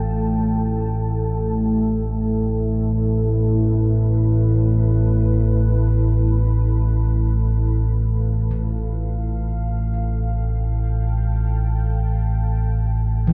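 Dark ambient drone in free time, desolate and unsettling, heard here as a section cut from a longer piece. A deep, ominous drone of rumbling, wave-folded tone sits up front from the start, low and sustained, with slow attacks and long releases dissolving into its own reverb. Above it, a moody pad of detuned sawtooth unison with a sine sub octave holds sustained chords, mellow and softened by chorus, fading out across the whole passage as the harmony moves from A5 to F at 7.6 seconds. At 8.5 seconds, very quiet gamelan-type bossed gongs enter with airy arpeggios, their bronze, beating tone rounded by padded beaters. The whole passage is bathed in a cavernous cathedral reverb with a 6.2-second decay, giving the dark production a vast, shadowy space.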